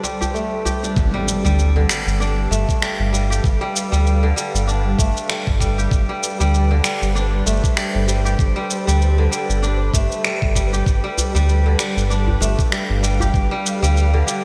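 A swung 97 BPM groove of electronic shaker and finger snaps with gated reverb opens this peaceful organic downtempo excerpt in G mixolydian together with crisp, ringing fingerpicked kora arpeggios with digital delay, an ethereal, airy pad with chorus and sidechain pumping, and a brief touch of soft-handed djembe. The kora and pad float over a round, deep analog bass and a gritty, thumpy electronic kick that arrive at 1.0 seconds alongside a background electronic impact, while the djembe returns at 11.2 seconds, the whole set in a lush hall with bright 1980s-style digital production.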